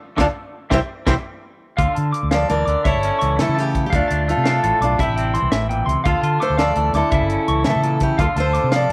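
A straight 12/8 pulse at 112 BPM, counted in dotted quarters, drives this danceable highlife guitar band excerpt in D minor, and its mood is bittersweet. A tight funk drum kit keeps time on hi-hat, tight kick and a high-tuned snare, sounding natural in a small room, while a fingered electric bass sits up front with a dark, round, amped tone. Up front as well, a picked steel-string acoustic guitar carries the melody between D4 and D5, its tone warm and auditorium-like. Beneath it, a bright, clean, compressed semi-hollow electric guitar plays accompaniment through spring reverb, and high above, an electric guitar through a small old amp picks twangy, slightly broken-up arpeggios with slapback echo. The band marks an accent over the opening 1.8 seconds, then settles into a cycle of Dm, C and A chords, all five parts playing together from 0.2 to 8.9 seconds inside light reverb and small room ambience.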